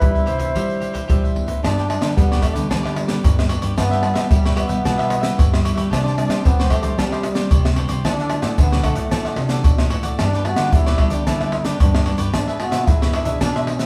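A straight 4/4 samba-and-choro groove from up-front, hard-handed percussion (egg shaker, tight surdo, pandeiro, caixa, agogo bells and tamborim) drives this playful, sunny fragment, where a breathy, close-miked concert flute melody lasts only until 1.3 s before the warm, scooped, jazz-style trombone, present from the start, takes a solo from 1.6 s over fingerpicked classical nylon-string guitar, a very quiet thumb-plucked nylon-string guitar bass line and a crisp, mellow cavaquinho in the background, the band playing live together in a wet, large studio reverb.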